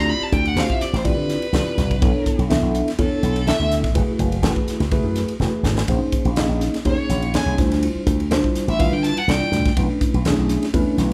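Intense and driving, this electric jazz fusion excerpt at 124 BPM in 4/4, with a light sixteenth-note swing, sets a bright, distant bowed violin full of vibrato in two phrases, the second returning at 6.9 s, over a mellow, clean tine electric piano, a punchy slap bass through an envelope filter, very quiet low-tuned congas and an up-front, polished drum kit with a high-tuned snare that plays a fill at 5.4 s, the band captured live in one room with light reverb as the harmony moves through minor eleventh chords such as Dm11, Bm11 and Gbm11.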